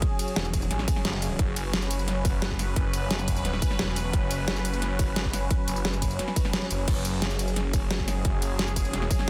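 Dense and heavily limited with light reverb, this aggressive, mechanical stretch of dark technical drum and bass runs at 175 BPM in 4/4, as a punchy, overdriven electronic kick and an up-front dubstep kit with deep snare, metallic hats, crash, ride and tambourine drive beneath a bright, airy, evolving pad holding sustained chords with chorus and sidechain pumping, while a wobbling FM bass flashes briefly at 0.4 seconds before a swirling, thick, detuned saw bass with phaser and tube saturation takes over from 0.7 seconds.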